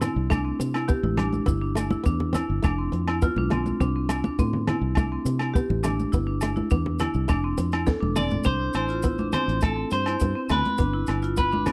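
A dry, close 1970s-style studio sound frames this joyful highlife guitar band cut, where a dark, hard-mallet marimba plays tape-echoed arpeggios up front over a round, foam-muted fingered electric bass, a compact cocktail drum kit with a high-tuned snare and punchy kick that plays a fill at 7.9 seconds, ringing agogo bells, medium-tuned congas, grainy maracas and, in the background, a fingerpicked flamenco guitar with audible finger squeak, before a clean, picked electric guitar melody enters at 8.2 seconds.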